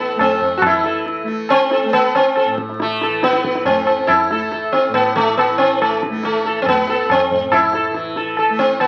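A sitar and a tanpura open this brief, meditative excerpt of Hindustani classical music together, with the tabla joining at 0.2 seconds. The plectrum-plucked sitar carries the melody up front, its bright, buzzing tone shimmering with sympathetic strings as it moves between A3 and A4. Beneath it, the softly plucked tanpura holds a drone from A2 to A3, sitting lower in the mix with its own bright, buzzing shimmer. The high-tuned tabla sounds close and ringing, keeping a solemn, straight pulse at 139 BPM in 4/4, with tuning set slightly below standard at A4 = 437 Hz. The performance is heard through a very old 78 rpm record, with vinyl crackle and a muffled top end, while a moderate large studio reverb lends the players a sense of space.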